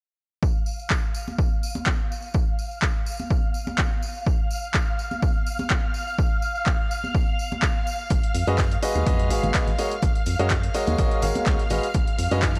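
A clear, intimate baby grand piano riff, up front with audible action noise and sidechain pumping, arrives at 8.5 seconds in this bittersweet, soulful piano house excerpt at 125 BPM in G# dorian, moving through G#m7 and D#m7/G#. It rests on shimmering, vintage string-machine violin chords with ensemble chorus, a filter sweep and pumping, over a punchy, tape-warm electronic kick and bright tambourine and congas from 0.4 seconds, joined at 0.9 seconds by an analog drum machine with handclaps and hi-hat, all with a gentle 16th-note swing. At 8.1 seconds a round, dark FM bass joins alongside a very quiet studio kit with hi-hat and snare, and a faint riser closes out the dry, gritty, cassette-tinged sound.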